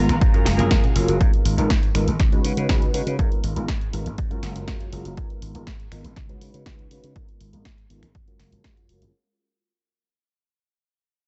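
A tape-tinged house kit of finger snaps, snare and pumping hi-hats opens this straight 4/4 filtered disco house groove at 121 BPM in G# dorian, along with a faint, vintage tambourine and congas that drop out by 1.2 s, and a punchy electronic kick joins them a moment later to drive the beat. A growly slap bass moves through a filter sweep under a detuned sawtooth polysynth comp with chorus and phaser, cycling F#maj9, G#m69 and C#9sus4, while a clean picked electric guitar riff and a woody, bowed violin section sound only briefly at the start, all inside a dark, dry mix that fades out across the whole funky, nostalgic cut from a longer piece.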